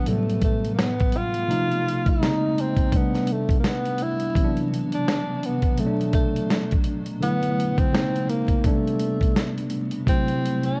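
A swung 16th-note groove at 84 BPM in 4/4 sets a nostalgic, melancholic lo-fi hip hop mood in A dorian, with a dusty, sampler-style drum kit entering at 0.1 seconds and sitting up front with a thumpy kick, a medium-tuned snare, hi-hat and a compressed, gritty 12-bit crunch. A worn, slightly out-of-tune tine electric piano carries the accompaniment through the whole passage, its clean, direct tone softened by cassette tape character, a low-pass filter and tape echo. Over it, a breathy tenor saxophone takes the solo melody up front, dark and smooth on top, with subtone, vibrato and scooped notes in a jazz style, also filtered and washed in tape echo. Beneath everything else, a very quiet granular cloud pad holds blurred, detuned sustained chords with a slow attack and long release, drifting through shifting harmonies such as Gmaj9, Bbm11, Am11 and D13 before settling on F#m7b5. The echo-heavy mix sits in light reverb with a bed of vinyl crackle, and the clip is cut from a longer piece.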